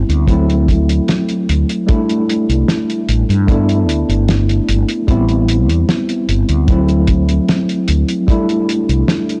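Melancholic and hazy, this short vaporwave excerpt drifts at 75 BPM in a straight 4/4, cut from a longer piece. A worn, slightly out-of-tune tine electric piano sits up front with lush chorus and tape echo, its mellow tone heard as if through built-in speakers as it moves through D7, C6/9, G6 and Am9 before circling back. Beneath it, a round, dark fretless electric bass with a subtle chorus holds the low end from the start until 9.0 seconds. A cloth-damped, thuddy drum kit supplies hi-hat and a fat snare, while a tight kick enters at 0.3 seconds; both carry a vintage 12-bit sampler grit and a smooth, rolled-off top. The whole recording is dry and gritty, with little reverb, transformer saturation and a cassette-tape haze that deepens its faded feel.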